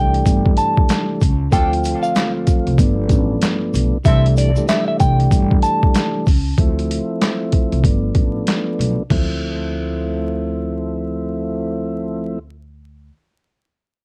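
Overdriven, pitched-down sampler-style drums with a thumpy kick and high-tuned snare drive this gritty, reflective boom-bap hip-hop fragment at 95 BPM in D dorian, swung on the 16ths, before dropping out at 9.3 seconds. A woody pizzicato upright bass and a soft, flute-like tonewheel organ turning through a slow rotary speaker carry the C6, Dm7 and G7 changes, while a dark, clean hollow-body guitar plays the melody with harmonic tremolo until 6.5 seconds, and a tight jazz horn section adds background stabs with analog delay from 1.5 seconds. A grainy tube shaker sits far back, and the home cassette sound brings vinyl crackle and little reverb.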